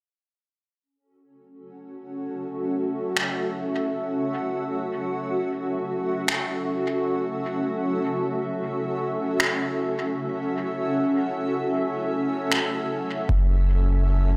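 A hazy, deep ambient dub excerpt in free time and F# minor opens with a cloudy, blurred granular pad holding sustained chords from 1.9 s, joined by overdriven electronic finger snaps with dub echo, before a round, soft sub bass and a distant, overdriven analog kick arrive at 13.3 s as the harmony moves from F#m7 to Aadd9/F#, all set in a moderate echo-chamber reverb.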